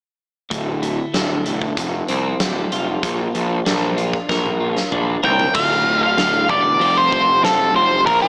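Quiet-loud alternative rock in D minor at 95 BPM, angsty and cathartic, built on a clean, compressed twelve-string electric guitar playing arpeggios through digital delay over a growly, overdriven picked bass and a big-room arena drum kit with bright cymbals and a punchy kick. At 5.2 seconds a dark, fuzz-laden octave lead guitar enters up front with the melody, overlapping a drum fill from 4.3 seconds that carries the music into a second section at 5.6 seconds, as the chords move from D5 through Fsus2 and Bb to Dm. Light reverb and a small-speaker character colour the mix of this short cut from a longer piece.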